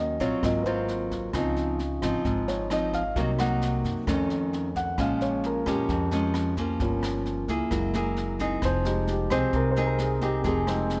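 An up-front, warm grand piano solos through this intimate, wistful bossa nova excerpt in F minor at 132 BPM, backed by a fingerpicked classical nylon-string guitar, a woody, thumpy pizzicato upright bass and a brushed jazz kit with a boomy kick, snare and rim clicks that enters at 0.2 s, set in light reverb as the harmony moves from Ab13 and Dbmaj9 through Cm7b5, Faug7 and Gb9 to settle on Fm7.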